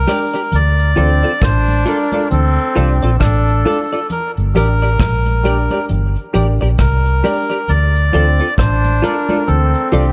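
Set in light reverb, this hypnotic, laid-back roots reggae excerpt in D minor moves at a slow 67 BPM with a swung 4/4 feel. A reedy, breathy melodica carries the melody with dub echo over a dark, round, foam-muted fingered electric bass up front, while a clean, compressed electric guitar with subtle chorus and dub echo, woody, slightly detuned upright piano stabs and a soft brush kit with punchy kick, hi-hat and rim click fill out the groove. Thin-skinned congas sit in the background, and from 1.0 seconds a bright, close-miked trombone with vibrato adds a second line through its own dub echo as the chords move between Gm and Dm.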